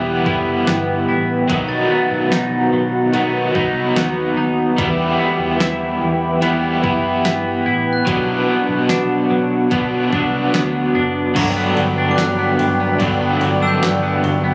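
Hazy and melancholic, this dream pop fragment drifts in a straight 4/4 feel as an up-front, crunchy overdriven guitar with tremolo and analog chorus picks its accompaniment over a hollow, flute-like pad, a twangy clean guitar tracing arpeggios through lush chorus and tape echo, a round foam-muted bass, a background glockenspiel ringing with brass mallets and tape echo, and a thumpy 12-bit drum machine that enters at 0.3 seconds, all heard as if captured on a phone in the room and bathed in club reverb as the chords move from Em through B and Bm to a closing Gmaj7 at 11.4 seconds.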